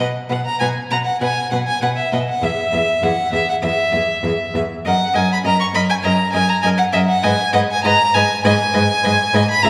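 In a rubato 4/4, this cheerful and graceful fragment of a quick classical-period string quartet movement has the second violin's reedy gut-string line up front above the rich cello bass, while the first violin's period-style melody with light vibrato and the smooth-topped viola accompaniment sit further back, all within the lingering reverb of a church or concert hall.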